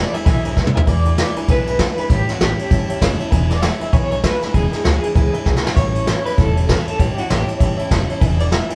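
Rowdy and upbeat, this short cut from a longer rockabilly piece swings gently at 196 BPM in E mixolydian, bouncing between E7 and A7. An electric guitar through a small old amp carries the melody with a twangy, slightly broken-up, lo-fi tone and a tremolo shimmer. A bright, full-bodied picked steel-string acoustic guitar and a clear, intimate upright piano, whose action noise can be heard, fill out the accompaniment, with the piano sitting in the background. A woody, thumpy pizzicato upright bass on gut strings anchors the low end from behind. Up front, a vintage brush drum kit with a tight kick, medium-tuned snare, ride and toms has a rolled-off top, and it throws in fills at 0.6 and 5.5 seconds. Light reverb gives the feel of a band playing live together in one room.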